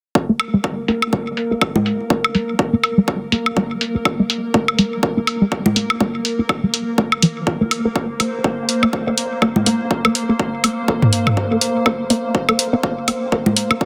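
A punchy analog kick and a pulsing, detuned triangle texture with chorus and its own reverb start together at 0.2 s on a Bb5 chord in this sparse, cool minimal techno excerpt at 123 BPM with a 16th-note swing, soon joined by a juicy, squelchy resonant blip pluck riff with phaser, lush chorus, tape echo and sidechain pumping, an up-front analog hi-hat with low-pass filtering, and a layered electronic woodblock, conga and tom part with delay, while a filter sweep runs on the synth arpeggio sound throughout under light reverb and a dense, heavily limited modern master.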